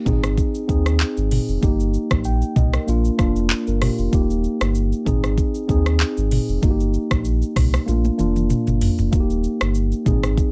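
A mellow, clean tine electric piano accompanies this breezy, romantic afrobeats excerpt in Eb major at 96 BPM, with lightly swung sixteenths and tuning at A4 = 435 Hz, over a full, sine-toned sub bass with octave and an up-front electronic afro-pop kit of deep kick, metallic hi-hat, handclaps, rim click, shaker and toms that plays a drum fill from 7.9 to 9.1 seconds, all moving through Ab, Eb/G, Bb and Eb in a dry, close sound.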